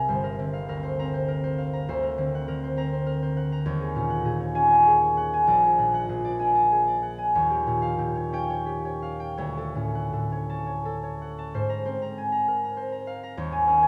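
In a flexible, rubato 6/8 that drifts between 54 and 68 BPM in dotted quarters, this peaceful, serene classical excerpt for solo concert harp, tuned to A4 = 444 Hz, is fingerpicked up front with a warm, ringing tone spanning G1 to Bb5, bathed in a wet church reverb of 3.9 seconds, and moves through rich harmonies such as Gm7, Daug7, Ebm7 and Eb9 before reaching Dmaj7 and then turning to a new passage at 11.5 seconds on Ab69 and Eb11.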